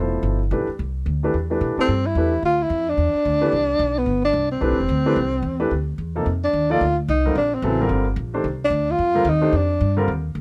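A brisk, swinging 4/4 pulse drives this short cut from a longer jazz piece, with a spiritual, searching mood. The upright bass is played pizzicato on gut strings, giving a woody, thumpy sound that sits up front beside a grand piano whose intimate, natural tone carries long sustain and audible action noise as it accompanies from the start. At 1.8 seconds a breathy tenor saxophone takes the solo melody in a dark subtone, its whispered, soft-attacked notes scooped and shaded with vibrato over a smooth top. The harmony rests on a Cmaj9 chord before moving to F13sus4 at 6.3 seconds, lending the second half a more suspended, open-ended colour. The recording is dry and close, with the saxophone set slightly louder than the piano and bass.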